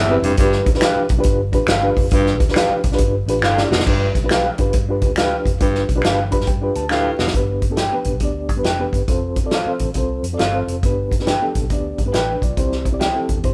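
Captured as a band playing live in one room under light reverb, this joyful, danceable slice of swinging 1960s-style soul opens with a growling, raspy baritone saxophone riff, bright, twangy guitar stabs through a slightly broken-up small amp, and a dark, round, foam-muted electric bass. A reedy electric piano with fast tremolo sits up front beside a punchy acoustic drum kit with a medium-tuned snare, while finger snaps hover in the background. Drum fills mark the turns, the electric piano adds a fill from 6.0 seconds, and the saxophone drops out at 7.3 seconds, just after the finger snaps stop, as the rest of the band carries on.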